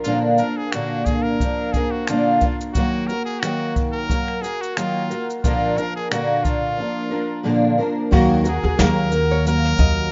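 A brilliant, punchy trumpet with vibrato and scooped notes carries the melody over an up-front, double-tracked picked steel-string acoustic guitar and a brushed jazz drum kit with dark cymbals, boomy kick, snare, shaker and finger snaps in this reflective, wistful acoustic pop piece at 89 BPM with a light 16th-note swing in Eb harmonic minor, moving between Bb and Ebm, until at 8.1 seconds a woody pizzicato upright bass joins along with a fingerpicked nylon-string guitar with audible finger squeak sitting in the background, all heard in a rough, dull-topped home demo mix with small room reverb, cut from a longer piece.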